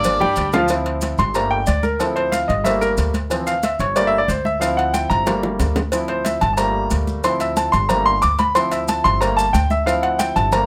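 A driving, danceable salsa groove at 183 BPM in D minor is laid down by thumpy, woody pizzicato upright bass, damped congas in the background, round low-tuned cowbell and bongos, and grainy maracas, with a drum fill arriving again at 5.3 s. A punchy, bright horn section with light vibrato opens the fragment up front but drops out by 0.5 s, leaving the clear, intimate grand piano, with its audible action noise and long sustain, to take a solo from 0.7 s over alternating Dm7 and Gmadd9 chords. The rough home-demo mix sits in a moderate studio reverb, with plate reverb on the horns and piano.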